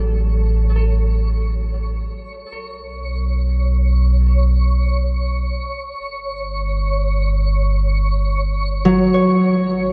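Bright, ringing concert harp arpeggios with delay open this spacious, melancholic ambient excerpt in free time and F# minor over a round, deep analog bass held up front, pausing at 1.6 seconds and returning at 8.8 seconds, while a twinkling granular texture with an octave-up shimmer fades in from 0.2 seconds through its own reverb and chorus as the chords move from A to Bsus2 to F#5 in a light reverb.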